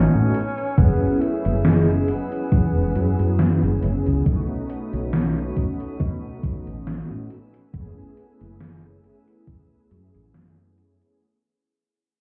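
This woozy, melancholic vaporwave excerpt, cut from a longer piece, fades out across its whole length, with a light swing on the sixteenths. A clear tenor saxophone with vibrato and a subtone carries a brief jazz-style melody through tape echo, falling silent at 3.8 s. Detuned sawtooth synth brass, mellow and round with chorus and a filter sweep, holds the accompaniment. A string section with a reedy gut-string tone sustains chords in the background. A woody, hollow-bodied fretless electric bass sits up front beside an overdriven drum machine whose hi-hat and snare carry gated reverb, and a thumpy electronic kick enters at 0.8 s and drops out at 9.7 s. The whole mix sounds muffled, as if heard through a wall, with club reverb and a cassette tape haze over chords moving from F#9sus4 to B9 to F#m11.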